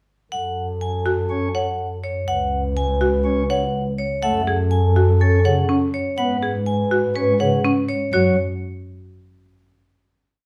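At 0.3 s a bright, ringing vibraphone struck with hard mallets sets out a repeated short cell up front, above a mellow solo French horn with light vibrato in swelling held notes and a lush bowed double bass section sustaining long tones. A buzzing marimba with a woody, percussive bite joins at 1.1 s with repeated arpeggios, and a pipe organ on sparkling flute stops soon adds light, baroque-voiced accompaniment, giving this meditative yet urgent minimalist piece a dark, warm sound in a moderate stone room. The pattern settles onto a final chord at 8.1 s.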